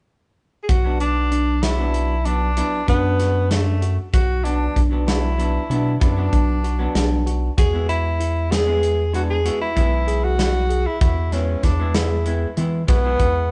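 Tense and brooding, this progressive instrumental cut from a longer piece moves in 11/8, with a breathy tenor saxophone carrying the melody up front in a jazz style, scooping into notes with a light vibrato. Beneath it, a rubbery, bouncy square-wave bass and a punchy acoustic drum kit on hi-hat, kick and snare sit close, while a dark, clean hollow-body jazz guitar plays accompaniment and a bell-like tine electric piano adds arpeggios in the background. The band sounds as if playing live together in a stone room with moderate reverb and a soft-edged top end, as the harmony shifts from B minor to E at 7.6 seconds.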